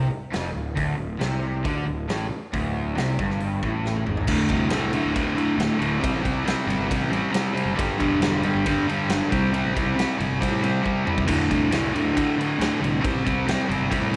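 Driving and confident, this classic rock excerpt moves at 137 BPM in a straight 4/4, built on a crunchy overdriven guitar riff, picked and double-tracked up front, over a growly fuzz bass played with the fingers. A big acoustic rock kit joins at 0.3 seconds with a punchy kick, medium-tuned snare, toms, hi-hat, and bright crash and ride cymbals, with drum fills at 3.8 and 10.8 seconds. The chords move between D5, C5 and G5 under a moderate plate reverb, and the clip is cut from a longer piece.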